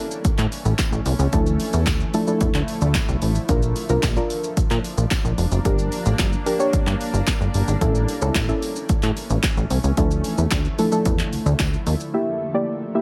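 Dance-pop at 111 BPM in D harmonic minor, energetic and confident, cut from a longer piece: a punchy, tape-warm analog drum machine with kick, snare, handclaps, hi-hat and shaker sits up front with a short room on the snare, clap and hats, while a funky, plucky analog bass with ring modulation, a deep, dark chord stab with chorus and a cloudy, evolving granular pad all pump with sidechain over a progression moving through A, Dmadd9, Bb and Gm before landing on Edim at 12.1 seconds, with a very quiet, jingly tambourine entering at 0.8 seconds.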